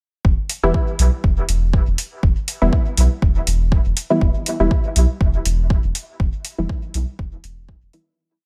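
Dub techno in E minor at 121 BPM with a light 16th-note swing, meditative and deep, built on a single Em groove that runs from 0.2 to 8.2 seconds. A round, soft sub bass with tube saturation and sidechain pumping plays a dotted rhythm under an up-front four-on-the-floor electronic kick, while metallic, tape-tinged hi-hats sit lower in the mix with small room ambience. Muted, detuned sawtooth chord stabs, one shape moved in parallel, echo sparsely through chorus, phaser, sidechain pumping and dub echo under a filter sweep, and the piece, set in digital ambience, fades out from 5.5 seconds.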